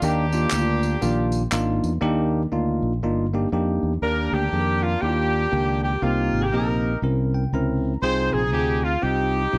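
A dark, roomy studio sound frames this jubilant, uplifting excerpt of uptempo gospel at 120 BPM in Eb major with a swung 4/4 feel, where a clear, tight horn section carries the melody over a bell-like tine electric piano with subtle chorus and a punchy fingered electric bass, close tambourine and handclaps drop out after 1.9 seconds, a breathy, intimate alto saxophone with light vibrato joins the melody at 4.0 seconds, and the electric piano plays a fill at 7.0 seconds as the harmony moves from Ebmaj7 through Cm7 and C7b9 to Fm7.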